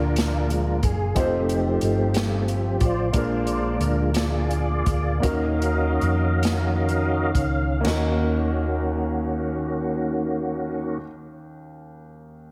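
A compressed, radio-like sound in a moderate echo-chamber reverb frames this solemn, fervent slow gospel excerpt in 6/8 and Eb minor, where an up-front, clear tonewheel organ with slow rotary speaker and chorus vibrato takes the lead over Bb7, F7 and Ebm7 chords, slowing from 3.1 seconds, above a vintage, smooth concert grand piano, a dark, round hollow-body electric bass, and an airy big-band drum kit with punchy kick, snare, hi-hat and china cymbal that drops out at 8.1 seconds; the organ and bass continue until 11.0 seconds, and the piano carries on until 12.5 seconds.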